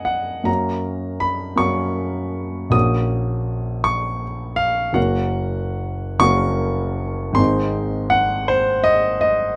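Wistful and mournful, this romantic classical nocturne fragment for solo concert grand piano drifts in a rubato 6/8 at around 53 BPM, spanning deep bass to high treble over chords moving from Gb through Gb/Bb back to Gb and on to Ab, with an intimate, up-front tone, audible action noise, a polished finish and a moderate studio reverb in a dark production.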